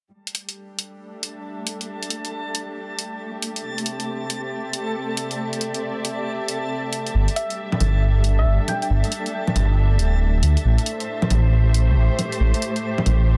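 A dark, detuned saw bass rumbles up front from 7.1 seconds in this ghostly, wistful future garage excerpt at 137 BPM, joining overdriven electronic hi-hat and bongos with a 63% swing, a muted, veiled string section fading in with sampler grit over Gsus2, C and Am7 chords, and a reversed, dreamy swelling texture with built-in reverb; moments later a brief round FM lead with chorus, phaser and delay enters in the background, all set in digital ambience under a dense modern master.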